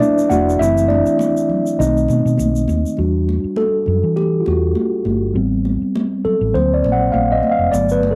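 Bittersweet and smooth, this short excerpt of lush 1970s-style soul moves with a gently swung sixteenth-note feel. A mellow tine electric piano sits up front, clean and heard through its built-in speakers, taking a solo across the whole passage while also carrying the chords. A hollow-body short-scale electric bass, played with the fingers, joins at 0.3 seconds with a dark, round, punchy amped tone that sits close to the listener. Bright, high-tuned congas with a thin skin sound distant and roomy in the background, and a grainy, saturated tube shaker adds texture until 3.0 seconds and briefly returns at 7.7 seconds. The harmony drifts through jazzy minor and altered dominant chords, from Bm7 and B7b9 into Em9 and D7alt, while light reverb, small-room ambience and a cassette-tape haze give it a homespun intimacy.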